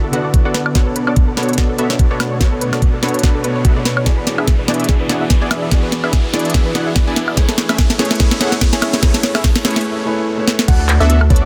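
A felt-muted upright piano, soft and intimate with audible action noise, opens this euphoric, playful future bass build-up alongside a gentle round pluck with chorus and a punchy detuned supersaw stab whose riff moves through a filter sweep, all pumping against a knocking electronic kick at 145 BPM in a swung half-time feel in A major. An ethereal, very quiet pad holds chords moving from D6 through Bm9 and E7 to Amaj7, while a faint riser climbs and a crisp trap kit with a sharp, soft-clipped snare, handclaps, woodblock and crash drives a long drum fill. At 10.7 seconds the piano drops away as a tine-like FM synth pluck takes the melody over a deep saturated sub bass, the dense, heavily limited mix carrying light reverb.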